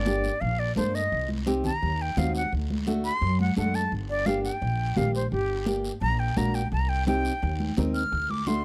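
A dry, close recording in a small room with a 1970s studio character carries this driving, passionate cumbia excerpt at 171 BPM in G harmonic minor, cycling through Gm, Cm and D7. An airy jazz flute with vibrato and a soft attack takes an expressive solo up front, ranging from G4 to F6, over a woody, thumpy pizzicato upright bass on gut strings and a full-bodied, fingerpicked nylon-string guitar with audible finger squeak. High-tuned, ringing congas played with soft hands sit in the background, joined by a raspy guiro from 0.1 seconds.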